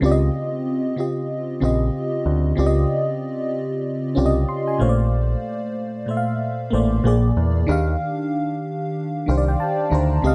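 R&B and neo-soul with a sensual, soulful mood and a lightly swung sixteenth-note feel, built on an FM electric piano layered with a soft pad, its dreamy, lush tone carrying chorus and tremolo over rich chords from Dbmaj9#11 through Bbmaj9, Bb7 and Ebmaj9. A deep dub picked electric bass sits up front with a round, dark, amped sound, while the electric piano adds fills at 4.2 and 8.9 seconds. The production is dark and warm, with light digital reverb, and the clip is cut from a longer piece.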